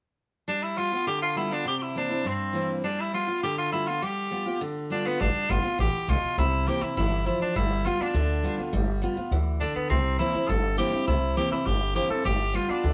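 A raspy, gritty tenor saxophone carries the melody with scooped notes and vibrato, sounding forceful yet roomy in a moderate stone room, over a bright, full-bodied picked steel-string acoustic guitar in this retro, upbeat rockabilly cut at 204 BPM in G mixolydian. At 5.2 seconds a woody, thumpy upright bass joins with dark gut-string pizzicato as the music moves into a new section. The band plays live in one room, with the changes cycling through G7, C7 and C.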